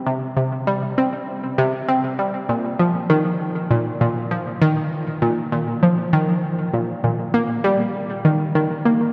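An analog pluck carries this ambient excerpt alone, its round, detuned tone, built from sawtooth, square and triangle waves with a noise layer and ring modulation, sitting bright and up front from 0.1 to 9.1 s, with a filter sweep, fast attack and short decay, plus chorus and analog delay. It moves between Bb2 and C4 at 99 BPM in a straight 4/4, and a wet cathedral reverb with a 5.1-second tail places it in a vast, echoing space. The mood is cosmic and hypnotic.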